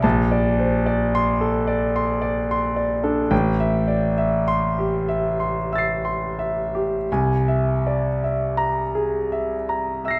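Impressionist solo piano in a luminous, serene mood, where a clear concert grand with deep bass and long sustain, spanning A1 to C7, sits up front in a moderate recital hall and drifts in a rubato 3/4 through Bbmaj9, Am7 and Caug7 chords across this short cut from a longer piece.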